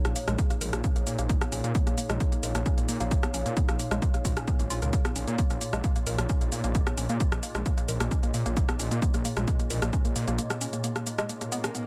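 Driving peak-time techno in Bb minor at 132 BPM, this dark, hypnotic excerpt is cut from a longer piece and sits on a single Bbm chord in straight 4/4. A punchy, up-front electronic kick anchors the groove from 0.4 s, joined by an analog drum machine whose hi-hat, rim click and shaker pump against the kick and trail tape echo. Underneath, a thick, menacing detuned saw bass beats and growls with tube saturation and sidechain pumping, while a woody, wave-folded pluck riff with a percussive snap, chorus and analog delay threads through the middle register. A warbly, lo-fi tape-like pad hovers higher with chorus and its own reverb, and a very quiet, swarming granular drone on Bb2 adds tension beneath it all. The kick drops out at 10.0 s, the bass follows at 10.4 s for a brief break, and a short electronic swell enters at 11.5 s in a lightly reverberant, echo-heavy mix.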